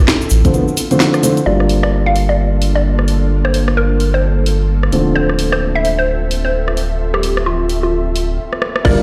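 A deep, thick saturated sub bass with sidechain pumping sits up front in this soulful, bouncy two-step UK garage excerpt at 130 BPM in G minor, swung on the 16ths. Around it play a garage drum kit with a cracking snare, rim clicks, crash and warm hats, and a tight, layered electronic kick that drops out for a break and returns at 8.8 s after a drum fill. A grainy tube shaker sits in the background until 1.4 s, alongside boxy, low-pass-filtered grand piano stabs with delay and an ethereal pad of sustained chords with ensemble chorus and pumping, while a hollow, detuned square-wave pluck melody with tape echo enters at 1.5 s, the mix heard as if played on a big sound system in a bare stone room.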